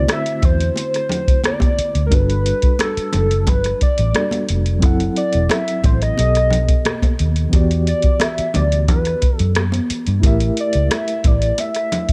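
Lush 1970s-style soul with a cinematic, silky mood, cut from a longer piece, where a hollow, woody square lead with chorus and vibrato carries the melody up front over a reedy electric piano shimmering with fast tremolo through its built-in speakers. A dark, foam-muted fingered bass stays round and punchy until 11.5 seconds, while a soft analog rhythm box with deep kick, metallic hats and rim click sits forward and ringing, high-tuned congas stay in the background. The dry, close sound moves through rich extended chords such as D9, Gmaj7 and B7b13 before settling on Em9 and A7(no3).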